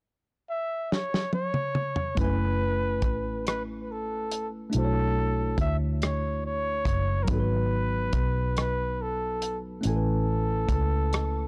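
Gritty and dry with a cassette-tape grain and small-room air, this sultry, late-night slow six-eight R&B piece opens with a breathy, whispered flugelhorn melody and a drum fill on a dark, smooth soul kit, before a worn, slightly out-of-tune tine electric piano with light overdrive and a round, punchy, foam-muted fingered bass join at 2.2 seconds over minor eleventh and seventh chords.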